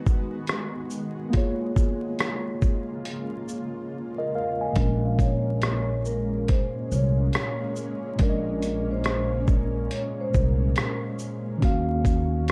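Lo-fi hip hop in Bb phrygian at a relaxed 70 BPM, this nostalgic, reflective fragment of a longer piece sits on a swung 4/4 groove under a dark production with vinyl crackle, light reverb and lossy compression artefacts. A mellow tine electric piano with a cassette-tape tint plays accompaniment from the start, over a cloudy, detuned granular pad that holds blurred, evolving chords in its own reverb, moving from Abm7 to Bbm7. A gritty, sampler-style soul drum kit sits up front with a thumpy kick, hi-hat, rim click and shaker, sounding re-recorded in a large room, and the opening break falls into a silent gap from 3.9 to 4.8 seconds. At 4.8 seconds a woody, plucked upright bass enters on Bbm9, and from 5.1 seconds a vibraphone played with soft mallets carries a ringing, band-limited melody with slow motor vibrato until 11.0 seconds. The harmony shifts to Ebm9 near the close, with the electric piano, pad, drums and bass playing to the end.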